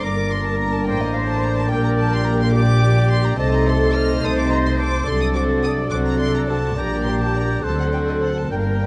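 A quick, classical-period movement for symphony orchestra in G minor, this lively and graceful passage moves in a lilting 6/8 at 72 beats per minute counted in dotted quarters, with a flexible, rubato feel, and it is cut from a longer piece. Across its 8.9 seconds a chamber violin section carries the melody high in its range, bowed sul tasto with light vibrato and a soft attack, while a second violin section, a silvery concert flute with a pure, straight tone and crisp attack, and an oboe with a smooth top and light vibrato add supporting lines above and below it. A viola section fills in the accompaniment with a gentle vibrato, and a mellow, tight French horn section holds sustained chords in the middle register. Underneath, a dark-toned cello section sits in the background and a double bass section anchors the low end, both bowed with an intimate, close sound. The harmony moves from G minor through a diminished chord to a dominant seventh, returns to G minor and closes on the dominant seventh, all heard in the generous reverb of a recital hall.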